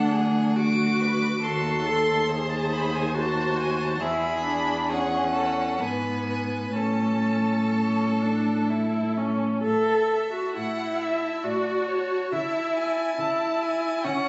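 Classical slow romantic movement for string quartet in A major, serene and tender, in a rubato 3/4 at 61-72 BPM, where a rich, distant first violin sings the high melody over a clear, close second violin line, an up-front viola whose expressive vibrato slides with portamento, and an intimate sul tasto cello bass with airy bow and soft attack, all heard through a moderate recital-hall reverb on a phone-captured recording with a muffled top end, in a fragment cut from a longer piece that moves from the dominant seventh to a settled tonic by 6.8 s.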